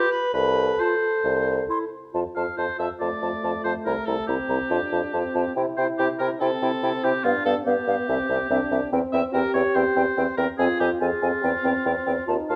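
Pulsing at 142 BPM in 4/4 with a rubato feel, this quick classical-period movement for wind quintet in F major sounds restless and urgent. The oboe, French horn and clarinet open together, with the bassoon supplying the bass line just after and a hollow, metallic concert flute entering at 0.8 seconds to carry the melody high above, tongued and with vibrato, though it sits in the background. Beneath it, the warm oboe plays a second line with light vibrato, while the clear, vintage-toned horn and the clarinet fill in the accompaniment in classical style. The mellow bassoon, with vibrato, sits up front alongside the oboe, though both carry a distant, roomy quality. After a short opening passage, a new section begins at 2.1 seconds, moving through dominant seventh harmonies and darkening with an F minor chord at 10.6 seconds before settling back toward C. The quintet is captured with close, detailed microphones in a recital hall with moderate reverb, and the passage is cut from a longer piece.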